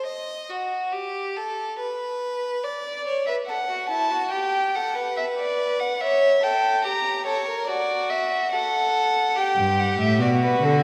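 A single violin opens this lively, elegant baroque-style classical fugue at 71 BPM, its rich, even tone sounding distant yet up front. At 2.8 seconds a darker violin takes the melody, played sul tasto with light vibrato and a soft attack for an intimate, close feel, while the harmony moves from D through a diminished chord toward G. A full-bodied cello enters on the bass at 9.6 seconds just before the cut, with a wet scoring-stage reverb around the ensemble.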